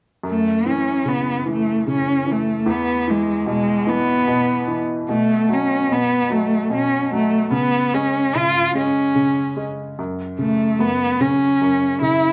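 A slow, straight pulse in 6/8 at 49 BPM, counted in dotted quarters, sets the unhurried sway of this brief acoustic folk-pop ballad fragment in F# minor. A clear upright piano carries the accompaniment in its low register, sounding woody and intimate, with audible action noise adding a close, present quality. Above it, a single bowed cello sings the melody from 0.3 seconds, rich and focused with a touch of nasal, boxy character and expressive vibrato, sitting up front and noticeably louder than the piano. The harmony moves through open fifth chords on F#, E, B and C# before returning to F# at 10.0 seconds. Light reverb gives the pair a modest sense of space, and the mood is heartbroken and melancholic throughout this short cut from a longer piece.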